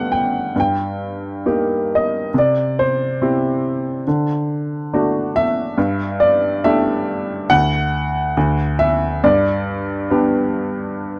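Tender and calm, this short excerpt of lyrical classical solo piano in G major unfolds at 69 BPM in 4/4 with a gently rubato feel, its clear, woody upright piano sitting intimate and up front with audible action noise, ranging from D2 to G5 through chords like Gadd9, Eb/G, C and D before a chordless stretch at 7.5 seconds and a return to G at 9.2 seconds, all wrapped in light reverb and a dark production.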